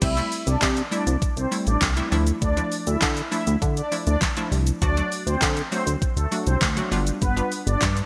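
A filtered supersaw swell carries the melody from the first moment of this euphoric, upbeat dance-pop excerpt at 100 BPM in C major, its soft-attack, detuned unison tone evolving through phaser and delay over chords moving from C6 to Dmadd9, D and G7. A hollow, bouncy square-wave pluck with chorus and a glossy, retro pulse-wave synth bass both pump with sidechain, the bass sitting up front with a mellow, sustained body. An overdriven, layered electronic pop kit of knocking kick, fat snare, handclaps, hi-hat, shaker and crash cymbal sits up front through gated reverb, all framed by bright 1980s-style digital production with light reverb.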